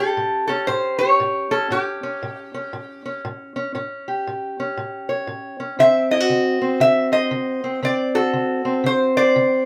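Swaggering and rollicking, this brief swung acoustic country blues fragment sets a bright, metallic, nasal lap resonator guitar played with slide and fingerpicks up front on the melody over a dark, boxy fingerpicked parlour steel-string acoustic guitar, moving from A7 to D7 at 5.8 seconds in a moderate studio room.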